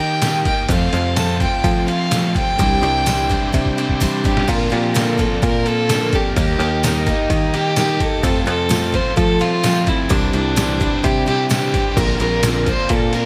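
A dark, woody fiddle carries the melody up front with light vibrato and tape echo, over a jangly, open-road folk rock and heartland rock groove at 128 BPM in 4/4. A gritty, pitched-down, sampler-style drum kit with a thumpy kick sits up front beside a growly, punchy electric bass, with a drum fill from 3.5 to 4.5 seconds, while a bright, full-bodied acoustic guitar, a double-tracked overdriven electric guitar riff and a jingly tambourine sit in the background. A very quiet, shouting tonewheel organ through a rotary speaker holds sustained chords as the progression cycles through Eb, F, Cadd9 and Bbadd9 in light reverb, in this cut from a longer piece.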